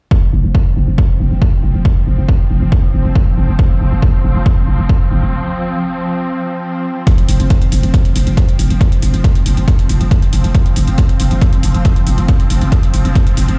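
Intense and hypnotic, this driving peak-time techno cut, taken from a longer piece, moves in a straight 4/4 pulse. A punchy, layered electronic kick sits up front from the first moment, joined almost at once by a growling, buzzy 808-style bass that hits with a fast attack, decays, and pumps against the kick through overdrive and a low-pass filter. From 0.5 seconds a swarming, tense drone of detuned, wave-folded tones swells in slowly underneath, evolving and granular, with a long release and its own built-in reverb, pumping in the background. After a break at 5.3 seconds, metallic electronic hi-hats arrive at 7.1 seconds, layered over the pounding low end. The kick and hats carry the character of a small room, while the overall sound feels like a big system in a bare space.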